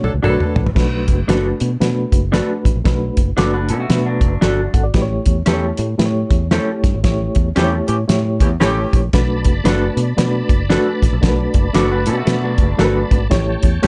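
A swung 4/4 groove at 115 BPM drives this urgent, uptempo 1960s-style soul excerpt in B minor, opening on a drum fill and band accent as a thuddy, cloth-damped kit with a fat snare, a punchy fingered bass and a reedy electric piano with fast tremolo carry the Bm7 to A7 changes, while a slightly broken-up guitar plays stabs throughout, a second lo-fi guitar adds a brief riff at 3.4 seconds, a tight saxophone section with light vibrato returns for an accent at 7.6 seconds, and a bright, lightly overdriven tonewheel organ with key click and slow rotary speaker holds sustained chords from 9.1 seconds in a dark, lightly reverberant mix.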